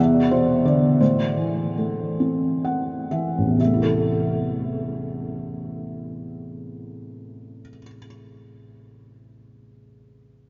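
This classical solo piano excerpt is melancholic and dark, moving in a rubato 6/8 at roughly 39-62 BPM in A minor. A felt-muted upright piano plays alone from 0.0 to 10.5 seconds, its soft, intimate tone up front with audible action noise. It opens on E5, reaches A minor at 1.0 seconds, and slows through the first 3.6 seconds, closing that stretch with a short fill from 2.2 to 3.6 seconds. The piano sits in a vast cathedral reverb with a long, echoing tail, and the sound is dulled with everything above 7.5 kHz cut away.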